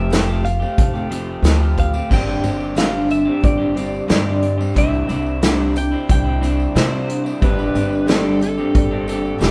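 A nostalgic, jangly blend of folk rock and heartland rock moves at 90 BPM in a straight 4/4, cut from a longer piece, with a band playing live in one room under light reverb through chords of Fadd9, Gsus4 and Cadd9. Up front, a soft brush kit with a punchy kick and a woody, thumpy pizzicato upright bass anchor a shimmering, octave-doubled picked twelve-string acoustic guitar in the background, a slightly broken-up, twangy electric guitar riff through a small old amp, a very quiet flute-like tonewheel organ with rotary speaker holding sustained chords, and a jingly tambourine. A clean, compressed twelve-string electric guitar carries the bright melody until 7.2 seconds, and at 7.4 seconds a warm, overdriven slide guitar played with fingerpicks takes up a second line.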